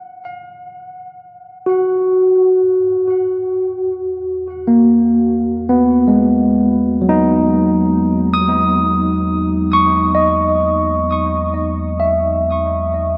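A barky tine electric piano leads this peaceful, luminous ambient excerpt, playing arpeggios that ring out bright, clean and up front, dressed in a lush chorus and delay. It sits in E lydian at a slow 65 BPM in a straight 4/4, tuned slightly sharp to A4 = 441 Hz. For the first 2.6 seconds the piano plays alone, then a deep, round sine sub bass fades in on a low E, its fast attack giving way to a sustained tone under an Emaj7 chord. The whole piece sits in a vast, echoing space, with a cathedral reverb whose long 6.1-second tail lets every note linger. It is cut from a longer piece, and both parts carry on until it ends at 13.2 seconds.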